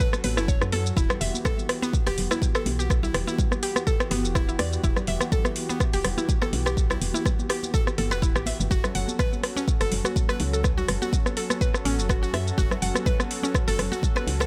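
Afro house at 124 BPM in E dorian, driving and hypnotic, with a 55% swing on the sixteenths and chords moving from F#m to Em and back to F#m at 8.7 seconds. A deep electronic kick sits up front beside a produced drum kit of metallic hi-hats, rim click and shaker, while ringing, high-tuned congas played with soft hands stay close and dry in the background. A dark, round FM bass with sidechain pumping plays alongside a bright, percussive mallet-like pluck playing arpeggios through chorus and tape echo, over a smooth, detuned sawtooth pad holding sustained chords, all in a dry room cut from a longer piece.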